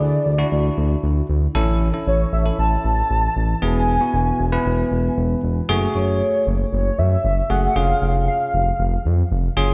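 A smooth, gliding synth bass sits up front in this melancholic yet driving synth-pop excerpt in F# minor at 116 BPM, its detuned sawtooth and square tones joined by portamento. Above it, a velvety, wave-folded synth lead with chorus and vibrato carries the melody until 9.0 seconds, while a barky, bell-like tine electric piano supplies clean accompaniment. The harmony moves from Dadd9 through A and E to F#madd9 and C#/E#, framed by a dark production and a concert hall reverb.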